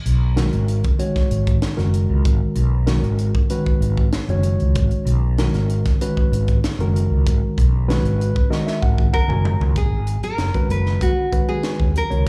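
Heard as a live club gig through the venue's PA, with small-room ambience and club reverb, this cut from a longer electric jazz fusion piece settles into a funky, nocturnal G# minor groove at 96 BPM in straight 4/4, resting on a G#m7 chord. Up front, a growly, amped fretless bass with lush chorus and a crisp kit with a punchy kick and high-tuned snare carry the piece from the start, while a mellow, reedy electric piano with slapback echo accompanies them, then adds a fill alongside a drum fill before the section change at 9.8 seconds. At 9.1 seconds a bright, fingerpicked nylon-string guitar enters with the melody, its full-bodied tone carrying audible finger squeak and its own slapback echo.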